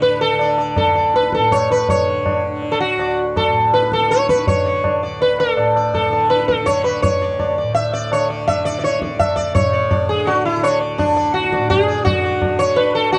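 Meditative and serene, this Hindustani classical passage, cut from a longer piece, moves in 7/4 at 165 BPM with a straight feel and speeds up across its 13.2 seconds. Set in D in raga yaman and tuned to A4 = 444 Hz, it is led by a plectrum-plucked sitar carrying the melody between D4 and E5. Its round, buzzing tone sits up front, with shimmering sympathetic strings. Beneath it, a softly plucked tanpura sustains a bright drone from D2 to D3, lower in the mix. The high-tuned tabla rings out from a distance, as if set in a large room, while the overall sound is that of a dry, close 1970s-style studio recording with a small room reverb, and the music moves into a new section at 9.6 seconds.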